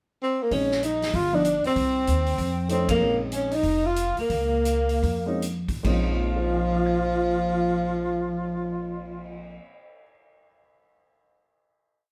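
Small-group swing and bop jazz in Bb minor, this short, late-night piece swings in 4/4 at a tempo between 136 and 193 BPM, played live in one room with light reverb. A breathy tenor saxophone opens with a pickup at 0.2 seconds, carrying a motif-based melody in a dark, whispered subtone with vibrato, scooped notes and a close-miked, intimate presence up front. A clear alto saxophone joins at 0.5 seconds as a second line with its own vibrato and soft attack, doubling in unison, while a dark, mellow upright piano comps with syncopated rootless voicings over chords such as Bbm11, G7b13, Cm and F7b13. A woody, growly pizzicato upright bass plays in two up front, and a big-room drum kit keeps time on the hi-hat with a punchy kick, a medium-tuned snare, ride and crash cymbals and a cymbal swell. After a band accent at 2.9 seconds the group slows down, arriving on a final chord at 5.8 seconds, and the piano is the last to sound.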